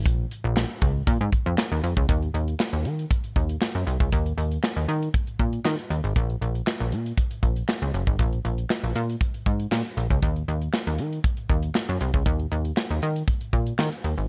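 A plucky analog bass opens this danceable early-eighties boogie funk excerpt at 118 BPM, its sawtooth and square-wave tone snapping with a fast attack and a decaying filter pluck across a range of Gb1 to Eb3. A modern studio drum kit joins at 0.1 s, with a punchy kick, a medium-tuned snare, hi-hat and handclaps set in gated reverb, and both parts sit up front in a dry mix. The straight 4/4 funk groove shifts into a new section at 2.1 s and carries on to the cut at 14.3 s.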